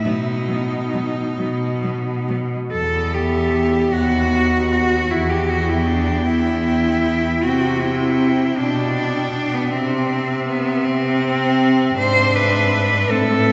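Melancholic and solemn, this lyrical classical passage for four bowed cellos moves in a rubato 6/8 at 44-54 BPM in E minor, with a clear, vibrato-laden melody singing high above a rich, focused accompanying cello, a smooth, close second line and an even, distant bass, all bathed in a wet church reverb as the harmony settles from B onto E minor at 2.7 s and closes on E7/G# at 12.0 s.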